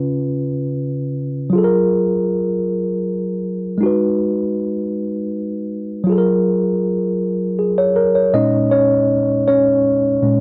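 A mellow tine electric piano, worn and slightly out of tune, plays alone through this short, slow R&B piece, sitting up front with a clean, direct sound coloured by cassette tape. In a straight 6/8, its chords move from C#7 through F#maj9 and G#m7, then shift to A#m7 at 8.3 seconds, setting a yearning, sultry mood. A moderate booth ambience and the home cassette recording give it an intimate, close feel.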